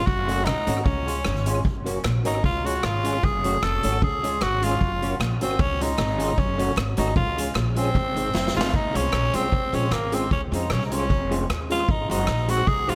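A bouncy ska groove at 152 BPM in 4/4, lightly swung, drives this joyful clip from a longer piece in Db major. A raspy, gritty tenor saxophone sits up front carrying the melody with bright vibrato and a touch of analog delay, while an upright bass thumps out woody, dark pizzicato lines on gut strings. The street-band drum kit sounds airy and polished in a big room, with a boomy kick, a medium-tuned snare, rim clicks and hi-hat, and it plays a fill at 8.3 seconds. In the background, a slightly broken-up electric guitar with chorus and delay plays accompaniment, and a soft, flute-like tonewheel organ adds clean stabs with key click, chorus vibrato and a stopped rotary speaker. A very quiet, hollow-body guitar plays a fingered riff until 8.7 seconds, where the harmony moves to a Dbmaj7, and crisp, saturated group handclaps sit faintly beneath it all, under light studio reverb.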